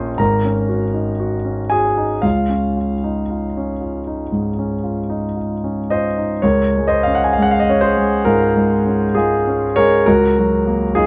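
A dark, warm production places a concert grand piano up front in light reverb, its tone clear and intimate, with the noise of the action audible beneath the notes. This impressionist classical fragment for solo piano, in 4/4 with a rubato feel, is luminous and serene. The piano carries everything alone, spanning from Ab1 up to Eb6, so its deep bass and long sustain let the harmonies bloom and hang in the air. It opens on an Ab9sus4 chord that settles into Dbadd9, then the opening phrase returns at 6.4 s on a Db6 chord before closing on a rootless Ebm7/Db at 10.1 s. The playing feels polished and present throughout the short passage, which is cut from a longer piece.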